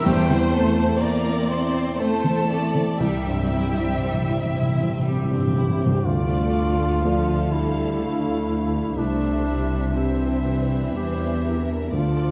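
A felt-muted upright piano, mellow and intimate with its action noise audible, anchors this longing, bittersweet cinematic film cue at 61 BPM in 3/4, moving with a rubato, uneven pulse beneath lush bowed violin, viola, cello and double bass sections, while a bright, airy flute ensemble adds a high second line until 5.1 s and soft-mallet timpani come in with a round fill from 3.0 s. At 5.1 s a distant, roomy duduk joins the melody with folk-style vibrato, and from 6.1 s the music settles into D minor as a French horn section holds smooth chords in the background over harmonies moving from Dmadd9 to C. The cut from a longer piece sits in a moderate scoring-stage reverb with a dark, warm production.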